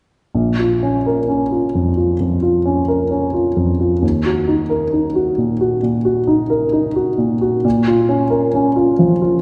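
A dusky recording heard from deeper in a reverberant scoring stage, its highs gently rolled off, frames a brief cinematic passage cut from a longer piece. An intimate, vintage-toned grand piano sits up front with audible action noise and short sustain, playing an accompaniment in Bb minor at a rubato 66 BPM from 0.3 to 9.4 seconds. It moves from Bbm to Ebm and back to Bbm, leaving a longing, sorrowful mood.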